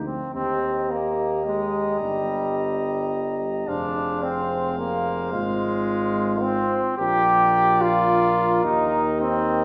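A stately classical brass quintet excerpt opens with trumpet, flugelhorn, French horn and tuba sounding together at 0.0 seconds, joined by the trombone a moment later at 0.1 seconds. The clear trumpet carries the melody high in its range, while the mellow, punchy flugelhorn shapes a second line beneath it. The French horn offers smooth-topped accompaniment and the tuba anchors the bass, with the brilliant trombone standing up front as the most prominent voice of the accompaniment. Set in Eb major in a rubato 3/4 at around 109 BPM, the harmony moves unhurriedly from Eb through Fm to Bb before settling back on Eb at 8.7 seconds. A glowing recital-hall reverb lends the trumpet, flugelhorn, trombone and tuba a distant, roomy presence, as if heard from within a church or concert hall.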